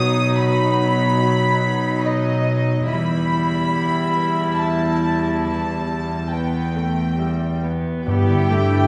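Heard from further back on a reverberant scoring stage, this tender, moving cinematic excerpt in a rubato 3/4 sets a floating, sul tasto violin melody and an intimate, lightly vibrato second violin line over clear, up-front violas, soft-attacked cellos and a mellow, ringing harp in the background, before bowed double basses and close timpani played with medium mallets join at 8.1 s as the harmony moves from B through Em to Gadd9.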